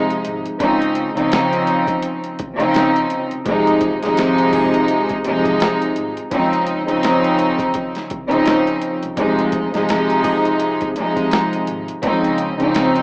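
This rough home demo mix has a small-speaker sound and a moderate plate reverb, and the strings carry the grain of cassette tape. It is a moody, reflective boom-bap hip-hop excerpt at 84 BPM in F minor, swinging its sixteenths and moving between Fm7 and Dbmaj9. A string section sits up front from the start, bowed sul tasto with a soft attack, its pure, floating tone sounding distant yet warm. A sampler-style drum kit of kick, snare and hi-hat joins almost at once, compressed and overdriven, with a thumpy kick, a medium-tuned snare and a gritty character, re-recorded in a small room. Beneath it, a woody, growly upright bass plays pizzicato low notes in the background. A very quiet, bright saxophone section adds two brief jazz-style stabs with vibrato, at 4.5 and 10.2 seconds.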